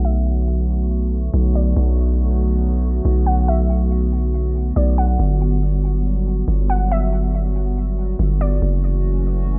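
A long, deep 808-style bass sits up front in this melancholic, ethereal hip hop piece, its sine tone striking fast and decaying across the full 9.6 seconds of the excerpt. At 140 BPM in 4/4 with a half-time feel in B minor, the harmony moves from Bm7 to Gmaj7 at 5.2 seconds and reaches F#m7 at 8.6 seconds. A hollow, flute-like pad holds sustained chords underneath, its slow attack softened by chorus and a low-pass filter. Above it, a warbling, dusty pluck carries the melody until 8.6 seconds, a detuned lo-fi tone with a noise layer, shaped by chorus, tape echo and a filter sweep. The sound is dry and close, with the rough, unpolished character of a home demo.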